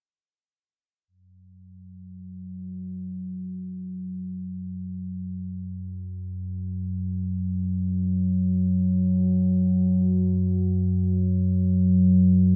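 Cavernous and dark, this free-time ambient excerpt, tuned to A4 = 438 Hz, is built on a single deep, rumbling synth drone spanning F#2 to F#3 that enters at 1.7 s and keeps fading in through 12.6 s. Its ominous wave-folded tone, slow attack and long release sit up front in a huge, wet reverb of 7.2 seconds within a shadowy production.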